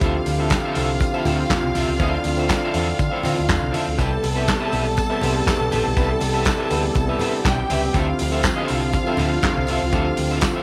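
An up-front soul drum kit drives this celebratory disco clip at 121 BPM in a straight 4/4, its tight kick, medium-tuned snare, hi-hat and handclaps sounding dry and mid-forward with a rolled-off top. Beneath it, a round, dark hollow-body short-scale bass played with the fingers holds down the low end, while congas with a thin, low-tuned skin join at 0.3 seconds alongside a jingly, very quiet tambourine. A lush, smooth string section carries the second line with rich vibrato and a slapback echo, and an electric guitar at the edge of break-up adds picked accompaniment through a lush chorus. Further back, a worn, slightly out-of-tune tine electric piano with light overdrive plays accompaniment, and a distant, roomy French horn section holds sustained chords. The harmony moves from Dm9 to Cmaj7 and back to Dm9 in a small room with light reverb, giving the joyful groove a warm, close feel.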